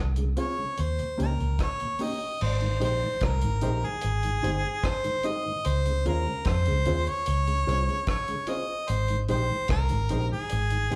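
A round, foam-muted electric bass opens this sunny roots reggae excerpt, sitting up front with a dark, amped tone. At 0.2 seconds the rest of the band arrives: a dry, tight-kicked drum kit with a rolled-off top playing crash cymbal, hi-hat, kick and rim clicks, a clean, fingered electric guitar colored by tremolo, and a mellow tonewheel organ tucked in the background with chorus vibrato, a slow rotary speaker and slapback echo. A clear harmonica takes the lead at 0.4 seconds, played with light vibrato and scooped notes in a present, pop-style solo voice. The harmony drifts through relaxed seventh chords, settling onto Abmaj7 as the longer second section begins at 2.4 seconds. The band sounds as if it is playing live together in one large studio room, wrapped in a moderate reverb that lends the groove an easygoing, warm glow.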